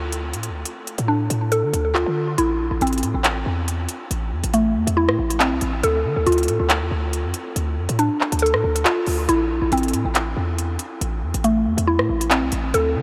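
Dark and ominous, this half-time drill piece opens on a woody, round mallet-like synth pluck playing arpeggios with a vintage FM warble, mellowed by chorus, a low-pass filter and delay, over a punchy, heavy 808-style sine bass that hits hard and decays. A crisp electronic drill kit of handclaps, hi-hat and rim click, tape-warm and up front, enters at 0.1 s. The dreamy mix is soaked in a huge ambient reverb with an 8.4-second tail as the chords move between Dm and Am.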